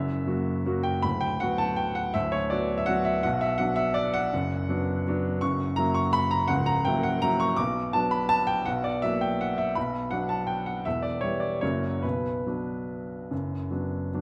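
A clear baby grand piano plays alone throughout this elegant, nostalgic classical waltz in B minor, sitting up front with a natural tone and long sustain across a span from C#1 to D6. The 3/4 metre moves with a rubato feel between 137 and 177 BPM, with harmony built on B minor and F#7 and a turn to E minor near 10.9 seconds before settling on B minor at 12.0 seconds. A wet recital hall reverb surrounds the instrument in this short cut from a longer piece, lasting 14.2 seconds.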